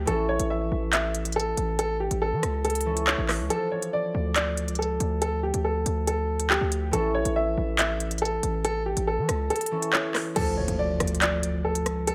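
A half-time drill groove from a crisp, up-front electronic kit of hi-hats, handclaps, rim clicks and crash cymbal sets an ominous, dark mood, briefly breaking at 3.5 seconds and dropping its kick from 9.5 seconds. A worn, boxy baby grand piano with audible action noise carries the mellow, intimate melody over a ringing, fingerpicked concert harp, while a heavy, aggressive distorted 808-style bass with a noise layer and fast attack sits up front. At 10.4 seconds a background electronic impact arrives as this cut from a longer piece shifts sections, all in a light digital ambience.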